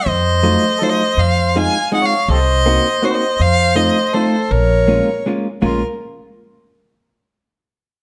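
A clear, smoothly bowed violin with vibrato carries the melody of this nostalgic, bittersweet musette in Bb minor at 162 BPM in a swung 3/4, joined by an overdriven, gritty harmonica second line with tongue slaps and scooped notes, a woody, thumpy pizzicato upright bass from 0.1 seconds, and a clean, picked, compressed hollow-body electric jazz guitar comping from 0.4 seconds, all captured with close, detailed microphones in a moderate recital hall reverb.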